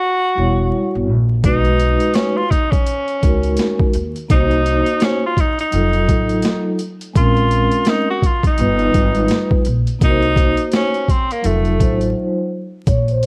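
Cool and nocturnal, this jazz-hop excerpt at 84 BPM with a swung 16th feel sets a clear, vintage tenor saxophone melody with vibrato and a soft attack up front over mellow, ringing vibraphone chords and a woody pizzicato upright bass on gut strings, while a gritty, overdriven boom bap kit with a thumpy kick and high-tuned snare enters at 1.4 seconds, all in a dark production with light reverb and vinyl crackle, and the saxophone drops out at 12.2 seconds for a brief break.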